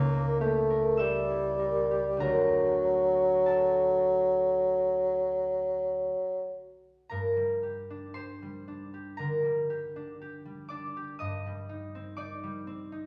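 A mellow bassoon and a ringing concert harp open together in this slow, rubato romantic classical duo in G minor, moving at 47-63 BPM in 4/4 with a yearning, solemn mood. The bassoon carries the melody in a narrow low register with light vibrato, sitting up front as the solo voice until 6.6 seconds. The harp accompanies with fingerpicked, warm acoustic playing that spans from deep bass to high treble, also up front but softer than the bassoon. The opening harmony rests on C#dim7 before moving to D, and after 7.1 seconds the harp continues by itself through Gm and Cm/G to the close at 13.1 seconds. The sound is bathed in a wet recital hall reverb, with a dull top end and a faint mains hum, and the passage is cut from a longer piece.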